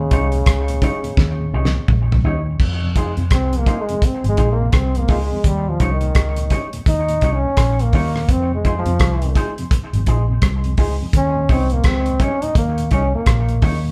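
Roots reggae with a hypnotic, serious mood, cut from a longer piece: a damped 70s drum kit with a fat snare, tight kick and rolled-off top sits up front beside a punchy, foam-muted fingered electric bass, while a twangy, picked electric guitar runs through an envelope filter and tape echo, and a mellow tonewheel organ with chorus vibrato and slow rotary speaker hovers in the background. After a drum fill from 1.2 to 2.6 seconds, the close-miked trombone, clear with light vibrato and scooped notes, takes a jazz-style solo over the alternating Eb7 and Fm7 chords. The band plays live in one large studio room with moderate reverb.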